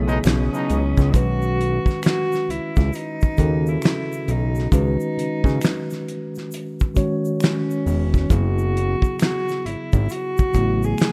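A rough home demo in a small room frames this introspective, sultry neo-soul R&B piece at 67 BPM, its swung sixteenths moving over C#m9, B9 and F#m7 chords. A punchy, bright trombone section stab and a lightly overdriven tonewheel organ with key click and slow rotary speaker, sitting in the background, mark an opening band accent that ends by 1.1 seconds, while a fat, detuned analog bass with a saturated filter pluck and a cloth-damped, thuddy drum kit with tight kick and rolled-off top sit up front. A mellow tine electric piano supplies clean accompaniment, an egg shaker and finger snaps add close, dry percussion, and a dark, reedy bowed cello carries the melody with a gut-string tone.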